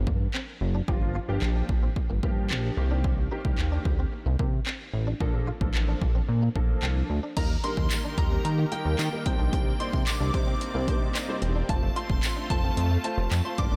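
Dance-pop at 111 BPM in a confident, bittersweet mood, this excerpt pairs a glossy, pumping synth bass and a punchy analog drum machine with kick, hi-hat, handclaps and crash, under a twangy clean electric guitar riff and a clear, intimate grand piano that plays a fill at 10.9 seconds. From 7.4 seconds a shimmering FM bell melody and a lush, warbling unison pad join, followed by a jingly tambourine at 7.9 seconds, over chords moving from Gm7 through Cm7 and Bbmaj7 to Eb, Cmadd9 and F, all in light digital ambience.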